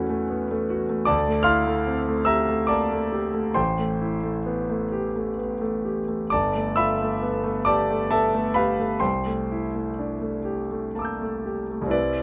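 Dreamy and serene, this short excerpt of impressionist solo piano drifts in 3/4 at a slow, rubato pace between 58 and 78 BPM, settling in C major. A concert grand plays alone throughout, ranging from G1 up to G6, its tone clear and polished with deep bass and an intimate, up-front presence. The noise of the instrument's action can be heard beneath the notes, caught by close, detailed microphones along with a faint mains hum. Lush extended harmonies unfold one after another, moving from A6/9 over E through Dm11, Am9 and G13 before coming to rest on C6/9 around 9.0 seconds. Light reverb gives the piano a soft sense of space while keeping its detail intact, and the passage ends at 12.2 seconds as part of a longer piece.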